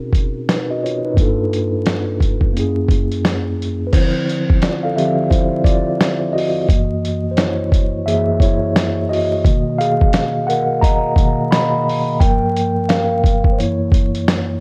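Hazy and nostalgic, this lo-fi hip hop excerpt moves at 87 BPM in 4/4 with a swung sixteenth-note feel. A mellow tine electric piano carries the chords from the opening, its clean tone heard through built-in speakers and colored by cassette tape, ranging from F#2 up to B5. A dusty, sampler-style drum kit joins at 0.1 seconds with a thumpy kick, a medium-tuned snare, hi-hat and crash cymbal, sounding compressed, gritty and tape-warm, as if re-recorded in a small room. Both parts sit up front in a dry, hardware-flavored mix dusted with vinyl crackle. From 3.9 seconds the electric piano takes a solo over a progression that moves through Dm9, F#9, Bmaj7 and Gm7 before settling on F#7, and the piece is cut from a longer work.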